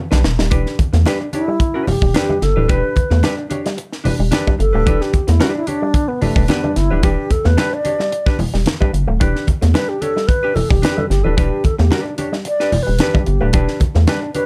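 Hypnotic and cool, this funk excerpt at 111 BPM sits in E dorian on a single Em7 chord, opening with a short drum fill from a crisp, high-tuned fusion kit with a tight kick as a rubbery, square-wave bass settles up front in the low register. A dark, clean hollow-body jazz guitar plays accompaniment while a twangy electric guitar with an envelope filter and tube saturation repeats a riff in the background, joined by low-tuned, ringing congas played with soft hands. From 1.3 seconds an airy, bright alto flute with vibrato and a soft attack carries the solo melody over the groove, all wrapped in light reverb and a dark production.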